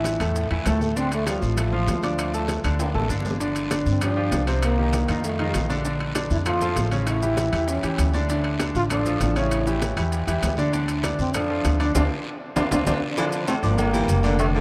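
Bathed in a vast, echoing cathedral reverb, this passionate, danceable salsa excerpt sets a dark, vibrato-laden trombone melody with scooped notes and analog delay over a clear, up-front grand piano with audible action noise and a woody, growly pizzicato upright bass, while very quiet congas, distant bongos and cowbell, ringing timbales and agogo bells, a raspy guiro and grainy maracas fill out the percussion, drum fills land at 2.8 and 12.6 seconds, and a breathy baritone saxophone slips in behind the band at 13.2 seconds.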